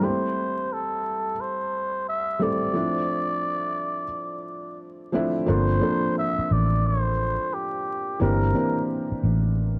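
A loose 16th-note swing at 88 BPM in 4/4 carries this reflective, melancholic lo-fi hip hop piece in G dorian, where a breathy, veiled trumpet with cup mute sings the melody with light vibrato and a gritty edge over a felt-muted upright piano whose intimate, mellow accompaniment carries audible action noise and a cassette-tape texture, both parts low-pass filtered, until a round, punchy, dark electric bass enters up front at 5.5 s as the harmony moves from Am7 and Dm9 to Gm11 and C9/G, set in a small room with light reverb and vinyl crackle.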